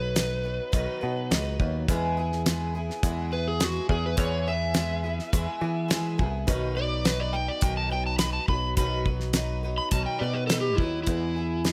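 A dark, overdriven slide guitar takes a solo from the opening, over a shimmering, octave-doubled twelve-string acoustic and a growly, punchy electric bass, with a dry 70s kit, fat in the snare and tight in the kick, joining at 0.2 seconds. This nostalgic, jangly folk and heartland rock cut, taken from a longer piece, moves at 104 BPM in a straight 4/4 in E major, shifting between B and E chords. A very quiet, woody and slightly detuned upright piano slips in at 1.9 seconds, and light reverb gives the whole a modest sense of space.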